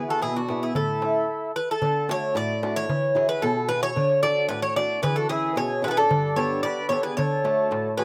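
Greek folk with a sunny, warm feel in 2/4, led by an up-front bouzouki whose metallic picked double strings, some doubled at the octave, carry the melody through a slapback echo. A reedy, rich accordion adds a mellow second line with the same slapback echo, dropping out at 1.5 seconds and returning at 5.0. Beneath them a boxy, fingerpicked acoustic guitar gives swing-style accompaniment and a crisp metal-shell darbuka, close and struck with hard hands, keeps time; after a brief stop at 1.3 seconds the band moves into a new section, all captured outdoors with little reverb.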